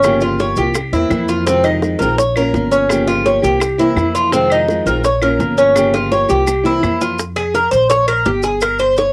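Sultry and warm, this excerpt of Cuban son and guajira moves at 168 BPM in 4/4 with a straight feel, set in F minor and tuned to A4 = 442 Hz. The Cuban tres sits up front with picked arpeggios on double strings, some doubled at the octave, ringing with a metallic edge through a cassette-tape colour over a progression of Gm7b5, C7, Fm7 and Bbm. A small, fingerpicked nylon-string guitar, also carrying a cassette-tape tint, plays accompaniment until 7.2 s, while a thumpy pizzicato upright bass with steel strings holds the low end. In the background, tight, high-tuned bongos struck with hard hands, woody claves heard at a distance in a large room, and grainy maracas supply the percussion, with a drum fill arriving at 5.8 s. At 7.2 s the tres takes a solo over Fmadd11, Gdim and Gmadd11, the piece captured as a home cassette recording in a moderate booth.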